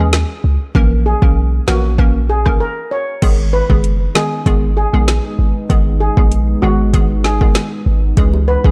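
Dark, close and dry, this cut from a longer dancehall track moves at 97 BPM in G# minor with a tough, sultry mood. An electronic afro-pop kit sits up front with a deep kick, woody snare, metallic hats and crash, all pushed through overdrive, while a boomy, sine-based 808-style bass anchors the low end with fast, decaying notes. A hollow, bouncy square pluck with detuned, ring-modulated tones, a filter sweep and chorus carries the accompaniment over C#m and A#dim chords. A shimmering steel pan, struck with medium rubber sticks and fed through digital delay, takes the melody from 1.1 seconds. After a brief break the harmony settles on G#m, and at 4.4 seconds a moody, slow-attack sawtooth pad with sub octave, chorus and reverb fills in beneath. Tight, high-tuned acoustic bongos flicker in the background at 8.3 seconds as the chords return to C#m.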